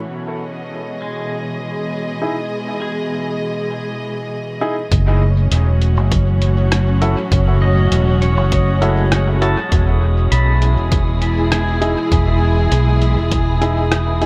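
A light reverb gives this ambient dub passage a spacious, meditative air. Dark, bowed strings hold soft-attack chords played sul tasto from the opening, while a clean pedal steel guitar picked with fingerpicks spins slide arpeggios through dub echo; both strings and steel pass through a filter sweep during the first 4.9 seconds. A woody upright piano, its action noise audible, adds echoed stabs from 2.2 seconds. At 4.9 seconds the rhythm section arrives: a round, up-front fingered electric bass, a punchy, overdriven electronic kick, and a muffled, pitched-down sampler-style kit of hi-hat and rim click, with low-pass filters on its hats and snare and its own dub echo. An airy, breathy wind-like noise texture with built-in reverb sits in the background, and the harmony moves between Emaj7 and F#m7 in a straight 4/4.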